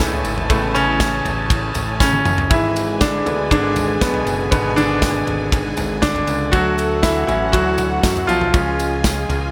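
A clear, up-front concert grand piano carries a dramatic, bittersweet piano-driven pop passage from the first second, backed by bowed strings with vibrato in the background, a fat, detuned analog bass with a filter sweep, a polished acoustic drum kit with a punchy kick, and a jingly, close tambourine. After a drum fill at 2.0 seconds, a mellow, distant French horn section enters at 2.5 seconds with a roomy, classical-style second line. Light reverb glues the straight, steady groove together over chords moving from Amaj7 through G#dim and Dmaj7 to C#.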